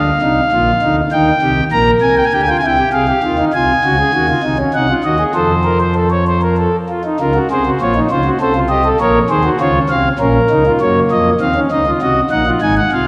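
Elegant and lively, this baroque-style three-part fugue for solo pipe organ moves at 99 BPM in a straight 3/4, settling into Bb minor from 3.5 seconds. The principal stop sits up front with a warm, smooth, chiffy voice and baroque voicing, spanning Ab1 to Bb5 in a wet church reverb. Cut from a longer piece, this 13.1-second passage returns to its opening material at 10.8 seconds after a brief contrasting stretch, with diminished chords adding tension along the way.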